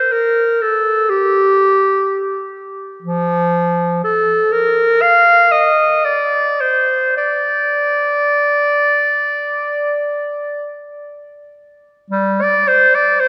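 A long, wet church reverb surrounds a single bright clarinet, heard present and up front as it plays alone from the start to 13.3 seconds. This lonely, meditative classical passage, cut from a longer piece, moves freely and expressively in rubato across a range from F3 to F5. A new section begins at 12.1 seconds, just before the recording ends.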